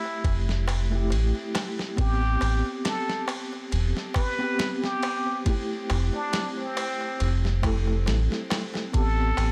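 A swung 69 BPM trip hop groove from a gritty, compressed sampler-style drum kit with a thumpy kick, backed by a clay-shell darbuka in the background, sits beneath a deep, round analog bass up front, while a mellow tine electric piano with tremolo and a filter sweep moves between Fmaj7 and Am7, a very quiet string-like drone hovers, and a plunger-muted trumpet with scooped notes, 12-bit grit and tape echo carries the melancholic, brooding melody.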